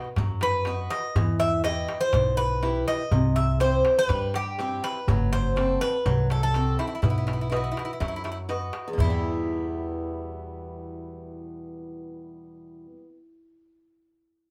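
A wet studio reverb places this Greek folk bouzouki band further back in the room, giving the excerpt, cut from a longer piece, a dramatic, driving character at 123 BPM in a straight 4/4, in E harmonic minor tuned to A4 = 439 Hz. The Greek bouzouki carries the melody from 0.4 seconds, its metallic, picked double strings, some doubled at the octave, ringing bright and up front between E4 and E5. Beneath it, a picked swing-style acoustic guitar supplies boxy accompaniment, while a pizzicato upright bass with gut strings sits up front with a woody, thumpy, dark low end. A metal-shell darbuka played with hard hands adds crisp, deep percussion until 9.2 seconds. The harmony moves through B, Em, C, F#dim and back to B before settling on Em as a new section begins at 9.0 seconds.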